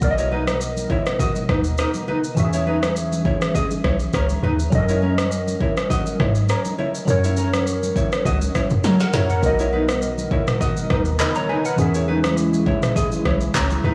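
Romantic and joyful, this afrobeats excerpt moves with a gently swung sixteenth-note lilt. A deep, round log drum bass with a fast, decaying attack anchors the groove. Beside it sit glassy digital keys, airy and touched with chorus. A fingerpicked nylon-string guitar carries the riff with a full-bodied acoustic tone and a tape echo trailing behind it. Up front, an electronic afro-pop drum kit with a deep kick, woody snare, handclaps, rim click, shaker and toms sounds overdriven, re-recorded in a small room, while distant, damped congas with a thick skin sit back in the mix. A drum fill at 8.8 s leads into a new section at 9.4 s, where a hollow, flute-like pad slowly fades in beneath the others, and the whole recording has a blown-out, overdriven edge and a light studio reverb.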